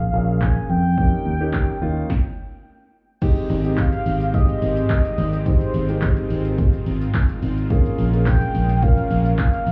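A punchy fingered electric bass sits up front with a punchy analog drum machine in this euphoric, summery dance-pop fragment in Ab major, moving at 107 BPM in a straight 4/4. The bass pumps against the sidechain, while the tape-warm drum machine supplies kick, snare, handclaps, hi-hat, shaker and crash, with a short room on the snare, clap and hats. A round, horn-like synth lead carries the melody with chorus, delay, vibrato and a filter sweep. A concert grand piano with deep bass accompanies it, also pumping. The groove halts from 2.1 to 3.2 seconds, and at 3.2 seconds a lush, detuned supersaw pad swells in with sustained chords alongside a very quiet, jingly tambourine, as the harmony moves from Bbm7 and Eb7 to Abmaj7 before returning to Bbm7. The whole mix sounds muffled, as if heard through a wall, with a touch of club reverb.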